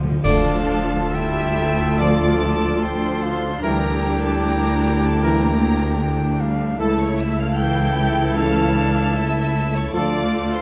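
Chamber strings open this melancholic, yearning slow romantic orchestral movement in D minor at 76 BPM with a rubato feel: a rich, focused violin melody sits over an intimate sul tasto second violin line, expressive background violas, and smooth cellos and double basses. From 0.2 s they are joined by clear clarinet and cor anglais, an airy flute, a distant trumpet's stabs, very quiet sustained trombone chords, and dark cymbals with concert bass drum marking the opening accent until 2.0 s, with mellow French horn chords following at 0.3 s. The scoring-stage reverb is moderate, and the harmony moves from Dm through Em7b5/D and A/C# back to Dm.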